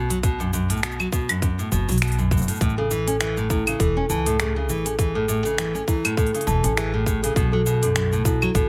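An up-front, fingerpicked nylon-string guitar opens this delicate, hopeful folktronica fragment, its full-bodied classical tone carrying arpeggios with audible finger squeak, softened by delay and plate reverb. Beneath it, a pizzicato upright bass with gut strings adds a woody, thumpy, dark low end. A tight electronic kick and an organic electronic kit of cabasa, claves, finger snaps and crisp hi-hat give the beat a produced, tape-warm character, re-recorded in a large room. At 2.8 s a bell-like celesta enters with a sweet, bright second line struck by hard felt hammers, also set in delay and plate reverb. The piece moves at 101 BPM in 4/4 with a gentle 16th-note swing, sitting in A major and shifting between B7(no3) and A under light reverb.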